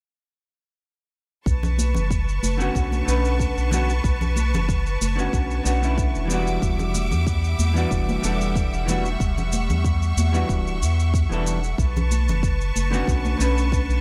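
A light reverb lends this relaxed sunset chillout excerpt a gentle sense of space. It moves at an unhurried 93 BPM in 4/4 with a straight feel, resting in B minor as the harmony drifts from Bm9 to Em9 and back. The bass, drums, shaker and strings arrive at 1.5 seconds: a round, dark analog bass sits up front with a fast attack and sustained notes, under a deep, layered electronic kick and a gritty, overdriven shaker. Hard-hand congas ring from the background, and a bright, biting symphonic string section holds lush, bowed chords with vibrato. At 2.6 seconds a vintage hollow-body jazz guitar joins with clean, picked accompaniment, its dark electric tone trailed by tape echo.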